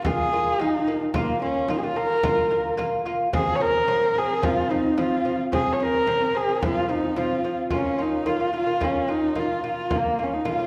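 A straight 4/4 pulse at 110 BPM carries this short Mongolian folk excerpt in Bb minor, its mood windswept and vast. A single horsehead fiddle takes the melody, sitting up front with a nasal, husky, boxy voice, its bowed horsehair strings shaped by vibrato and portamento into an expressive line between Bb3 and Db5. Beneath it, an acoustic lute fingerpicks mellow, delicate arpeggios on double gut strings, some doubled at the octave, staying between F3 and F4. A deep, large frame drum keeps the percussion close and dry, lower in the balance than the other two parts. The harmony rests on Bb5, moves to F5 at 3.3 seconds and returns to Bb5 at 7.7 seconds, all within one unbroken section. The recital hall adds a generous 1.8-second reverb, giving the ensemble the spacious air of a church or concert hall.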